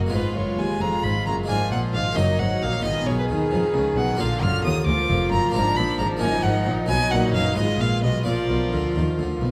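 A solo violin sits up front with a smooth, even tone and vibrato, carrying the melody high over a stormy, dramatic excerpt from a baroque-style concerto movement in 6/8 at 88 BPM (dotted quarters). Beneath it, a very quiet, distant violin section also plays a melodic line while a second violin section plays a second line, and a viola section and an expressive cello section sit in the background alongside a smooth, even double bass section. A close-miked, dry, brilliant harpsichord fills out the accompaniment, all set in a moderate concert hall reverb.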